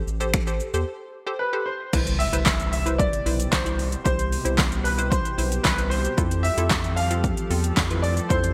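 Driving and energetic, this dance-pop excerpt opens on a detuned, chorused analog pluck and a dark, round analog bass, both pumping under a punchy, overdriven deep house drum kit of fat snare, metallic hats, kick, claps, snaps, shaker and crash, the kit bathed in gated reverb. A clear, polished concert grand piano carries the melody from 1.4 seconds through lush chorus and digital delay, while a shimmering pulse-width pad enters in the background at 1.9 seconds as the harmony moves from Am7 to Cmaj7 and later Fmaj7. A very quiet electronic impact arrives at 2.0 seconds, and the mix has a bright 1980s-style digital sheen with light reverb.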